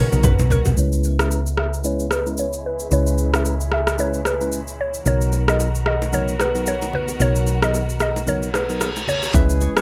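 Afrobeats excerpt with a mellow, sultry swing, built on an overdriven deep house kit with a deep kick, rim clicks, shaker and toms up front beside a round, punchy hollow-body electric bass, while a clean tine electric piano and softly bowed, sul tasto strings hold the chords under a woody, warbling FM synth pluck melody. A fingerpicked nylon-string guitar with tape echo and finger squeak sits in the background at the edges, and ringing bongos and congas return from 5.1 seconds as the chords move from C#m7 to Bmaj7. A filter sweep runs through the main section before a reverse cymbal rises into an electronic impact at 9.3 seconds, where a smooth horn section briefly joins in a light reverb.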